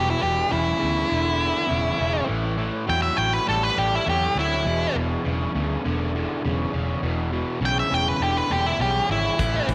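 An octave-fuzz lead guitar carries the melody from the first second, its picked, distorted tone sitting up front with a slapback echo, over a driving blues rock and southern rock groove in E mixolydian at 102 BPM in a straight 4/4. Beneath it, a bright, double-tracked semi-hollow guitar grinds out an overdriven riff in the low register, touched with spring reverb. A vintage fingered bass supplies a round, foam-muted bottom, while a gritty tonewheel organ holds thick sustained chords far back in the mix through a slow rotary speaker. The harmony moves from E7 to A7 at 2.3 seconds and returns to E7 at 4.7 seconds, giving the passage a swaggering feel. At 9.4 seconds a big, dark rock drum kit slips in very quietly with hi-hat and a punchy kick, just before this cut from a longer piece ends in a small room with light reverb.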